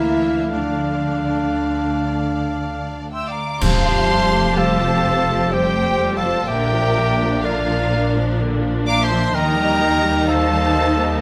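In a rubato 3/4 at 57-65 BPM, this longing, sorrowful cinematic orchestral passage in D minor sets lush, vibrato-rich violins on the high melody over a focused second violin line, an airy, hollow flute and a soft-attacked oboe, with a very quiet, bright solo clarinet until 3.1 s, rich background violas, a warm French horn section holding chords, ringing fingerpicked harp arpeggios, and expressive cellos with distant double basses on the bass; it shifts to F major as dry cymbals and concert bass drum play from 3.6 s to 5.5 s, all within a moderate scoring-stage reverb.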